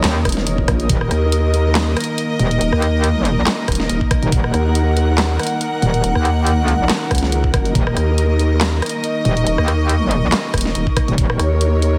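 Opening at once on dark, sul tasto string chords pumping from sidechain compression, a metallic FM wobble bass with chorus and overdrive, a layered dubstep kit with a huge up-front snare, handclaps, hi-hat and rim click, and an ethereal, airy pad pumping in the background, this menacing, heavy wobble dubstep excerpt in Eb minor at 140 BPM rides a swung half-time feel as a nasal, formant-filtered vowel-sweep wobble bass, also chorused and overdriven, joins at 0.3 seconds alongside a knocking electronic kick that returns in short bursts, the mix sitting in light reverb with a heavily compressed, radio-like sound.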